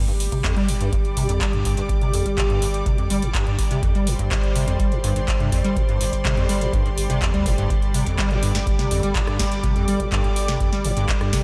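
A straight 4/4 acid house groove at 124 BPM drives this gritty, raw excerpt, with an overdriven electronic kick arriving at 0.3 s beside a booming analog drum machine of crisp snare, handclaps, rim click and metallic hi-hats. A squelchy, resonant square-wave acid bass riff with overdrive, tape character and delay rides over a thick, saturated sine sub bass, while a nostalgic, detuned lo-fi pad holds sustained chords on a G5 harmony. A clear symphonic string section with light vibrato adds intense bowed texture above, and every part except the drums pumps against the kick in a dreamy mix soaked in lush hall reverb.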